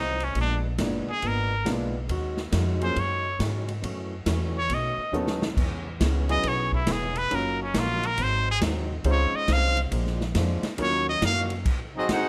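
Heard through close, detailed microphones with light reverb, this energetic big band swing fragment is led by a nasal, brilliant trumpet with a straight mute, carrying the melody in plate reverb over woody pizzicato upright bass, a boxy picked acoustic guitar with finger squeak, and a polished drum kit with dark cymbals and a punchy kick that adds a brief fill around 5.1 seconds. A clear baby grand piano joins the accompaniment at 1.6 seconds, with chords moving from Bb7b9 through Ebm11 and Dbmaj9 before settling on Ab7. At 12.0 seconds a tight, up-front trumpet section takes the melody, backed by a bright trombone section on a second line.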